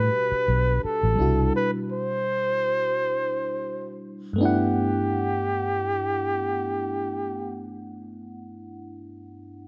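A breathy flugelhorn carries the melody in this short R&B excerpt, its whispered, intimate tone shaped by vibrato and a soft attack and set in plate reverb, until it stops at 7.7 seconds. Beneath it, a mellow FM electric piano supplies accompaniment through a chorus effect, its round, decaying voice edged with a noise layer, and it continues alone until 9.7 seconds. A vintage muted fingered electric bass appears only briefly at the start, dark, foam-muted and punchy, before dropping out at 1.5 seconds. The harmony moves from A13sus4 to Cmaj9 and then settles on G6, over a lightly swung groove that gives the piece a relaxed, sensual feel. Light room reverb keeps the intimate, up-front parts close together.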